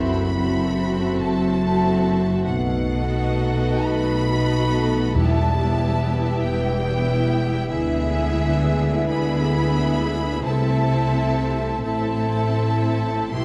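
In a rubato 12/8, this slow, melancholic and yearning romantic orchestral excerpt has a focused, close violin section singing the melody high above a smoother, more distant second violin line, while violas supply a rich, vibrato-laden accompaniment. Dark French horns hold sustained chords in the background, a ringing, fingerpicked concert harp spins arpeggios, and lush cellos and even, smooth-topped double basses anchor the bass. Close, dry timpani sound from 5.2 to 6.4 s, and the whole excerpt is bathed in the wet reverb of a scoring stage.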